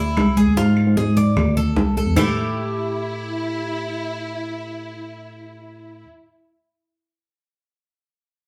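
Latin Cuban son and guajira with a sultry, danceable feel, this short excerpt sets a metallic, picked Cuban tres playing arpeggios over an up-front bass line from a worn, slightly out-of-tune tine electric piano heard through a combo amp. Bright, high-tuned congas, tight vintage bongos and woody claves sitting in the background play from 0.2 to 2.3 seconds, and just before they stop, a lush, bowed studio violin section enters at 2.2 seconds with a rich, vibrato-laden second line on E4. The band sounds as if playing live in one room, wrapped in a large studio reverb.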